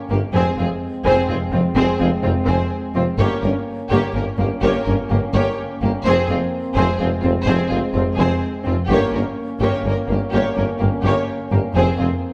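A French horn section opens this heroic, relentless stretch of epic orchestral film score, sounding warm with light vibrato as it holds sustained chords in the background, and the strings and tuba join at 0.1 seconds. In 12/8 at 84 BPM, the music sits in F minor and alternates between F minor and G diminished, building steadily across its 12.3 seconds as part of a longer piece. Two violin sections carry the top: one plays the focused, distant melody, while the other, smooth and even, shapes a second line beneath it, both bowed with lush vibrato. Violas add rich, smooth-topped accompaniment, while the low end rests on expressive cellos, double basses with a soft attack and portamento, and a clear, soft-edged tuba in the background. A moderate scoring-stage reverb gives the ensemble a spacious, cinematic sheen.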